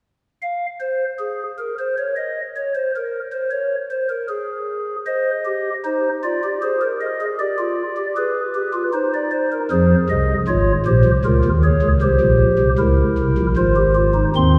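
Long church reverb surrounds this excerpt, placing the listener toward the back of a resonant room while the organ's stopped flute stays close and clear. A baroque-style three-part fugue in triple metre unfolds on the solo pipe organ, its soft, hollow flute stops touched with a gentle chiff, ranging from deep low notes to bright upper lines. The mood is contemplative yet driving, with minor-key harmonies moving steadily through dominant sevenths until the excerpt breaks off at 14.6 seconds.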